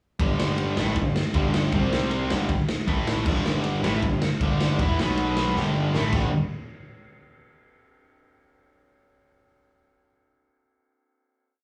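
A sludgy, overdriven guitar power-chord riff with a slapback echo opens at 0.2 seconds, doubled by a round, fuzz-soaked picked bass driving eighth notes and a raw garage drum kit with a punchy kick and gritty, saturated, rolled-off top playing a two-step groove, in a rowdy, energetic punk rock tune at 157 BPM in G major. The riff moves through G5, C5, A5 and B5 power chords, a drum fill arrives at 5.6 seconds, and the whole piece closes on a final hit from 6.3 seconds. It sounds like a live gig through the venue's PA, with club reverb and small-room ambience.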